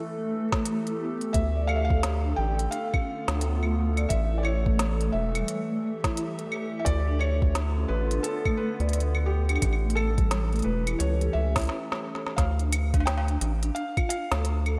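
A warbling, lo-fi tape-like pad with chorus, phaser and 12-bit grit opens this melancholic, eerie, swung IDM fragment on sustained chords. A metallic vibraphone with soft mallets and fast motor vibrato follows with arpeggios in a diffuse delay, a soft electronic kick and a small-room kit of woody snare, crisp hats, claves and cowbell enter, and a felt-muted upright piano with audible action noise carries the intimate melody over a deep, round analog bass up front from 1.3 seconds. A drum fill marks the break before the pad stops at 12.4 seconds, and the dreamy mix is soaked in lush hall reverb.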